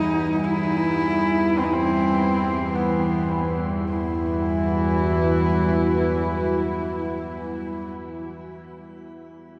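This dark ambient drone piece, cut from a longer work, sits in free time in E minor and carries an ominous, dark mood. An up-front horsehead fiddle, played by one bowed player on horsehair strings, carries the melody from B3 to E4 with a biting, husky, earthy tone, light vibrato and portamento, wrapped in shimmer reverb and tape echo. Beneath it, a deep, detuned analog pad holds sustained chords built on an Emadd9 harmony, its sawtooth and triangle layers with a sub octave slowly evolving through chorus and shimmer reverb. A nasal analog drone grounds everything from E2 to E3, its pulse-width-modulated sawtooth tone under a filter sweep during the first 3.9 seconds before the piece shifts into a second section. The fiddle and drone stop at 7.9 seconds, leaving the moody pad alone until 8.4 seconds, all set in a huge, wet reverb with a dark production.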